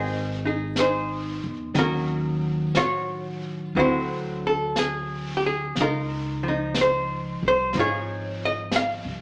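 A slow jazz ballad at 60 BPM in 4/4 with a swung eighth-note feel, this short excerpt carries a melancholic, smoky mood and is tuned slightly below standard pitch. A miked and amplified archtop guitar sits up front as the accompanying voice, its clean, picked hollow-body tone dark and compressed as it moves through a rootless Fm7, then Ebm9, D9 and Dbmaj9. Beneath it, a pizzicato upright bass with steel strings gives a woody, low foundation. A vintage brush drum kit joins at 0.8 seconds, with brushes on a high-tuned snare and hi-hat, its sound mid-forward and rolled-off at the top. A wet large studio reverb lends the whole a lingering, late-night space.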